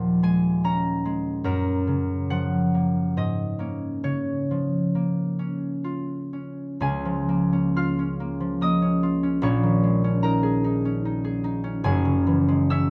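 A concert harp, fingerpicked and ringing, sits up front in this graceful, dreamy classical solo in Db major, moving in a rubato 3/4 at roughly 58-77 BPM across a span from Gb1 to F6. Cut from a longer piece, it states its opening idea and then returns to it at 6.8 s, with chords drifting from Ebm11 through Gbmaj7 and Db6 before settling on Gbsus2 near the close. Close, detailed microphones catch the harp's warm acoustic tone, set in a light reverb.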